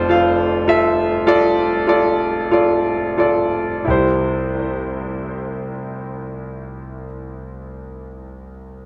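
This pop fragment, cut from a longer piece, is heartfelt and tender: a solo concert grand piano in C major at a very slow 43-53 BPM in 4/4, easing back in tempo over the first 3.9 seconds as an F6 chord settles onto C. The piano is clear and up front, with a deep bass extending down to F1 and an open top reaching F5, its notes carrying a tape echo. A moderate recital hall reverb of 1.4 seconds surrounds the playing, and the instrument is tuned slightly low, to A4 = 437 Hz.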